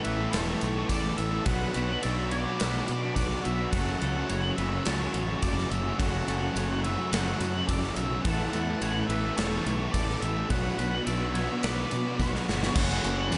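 A straight 4/4 pulse at 106 BPM drives this wistful, hazy shoegaze and dream pop rock piece. Up front, a punchy gated 80s drum kit in a bright stone room meets a dark, round fuzz fingered electric bass, with a very quiet, jingly vintage tambourine joining at 0.3 s. A dense wall of riffing sits behind them: a double-tracked overdriven electric guitar, an overdriven semi-hollow guitar with reverse reverb, and a thick fuzz guitar with ensemble chorus, all cycling through Asus2, Bm and F#m. Meanwhile, a dark, distorted octave-fuzz lead guitar carries the melody, and a twangy electric guitar drenched in lush chorus and digital delay plays arpeggios until 12.8 s, the moment a drum fill that began at 12.2 s ends.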